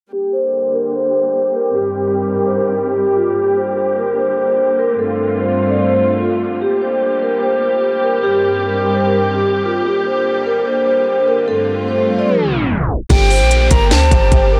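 Dark and eerie, this half-time trap excerpt in G minor at 148 BPM opens with a mellow, ringing vibraphone melody over sul tasto studio strings holding smooth, intimate chords, both veiled by a filter sweep and a 7.2-second reverb that soaks the mix in a dreamy haze. A tape stop from 12.3 seconds and a reverse cymbal with downlifter from 12.4 seconds build tension. At 13.1 seconds a trap kit with sampler grit, a hard-clipped kick and crisp hats drops in alongside a boomy, sine-like 808 bass and a bright, airy flute line treated with tape echo.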